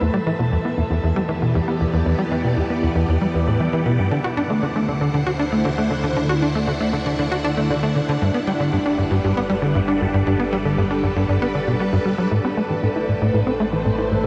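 Expansive and cosmic, this cut from a longer piece of ambient, sequencer-driven space music moves at 117 BPM in a straight 4/4, with a punchy sawtooth-and-square sequencer bass riff up front carrying ring modulation, a plucked filter and lush chorus with delay, while a bright, swirling vintage string machine holds sustained chords through ensemble chorus and phaser, a mellow, warbling analog drone with pulse-width modulation fades in from 1.7 seconds in the background, and the chords move from Em7 through D7 and Gmaj7 to Amadd9 inside a dark production bathed in an 8.7-second shimmer reverb.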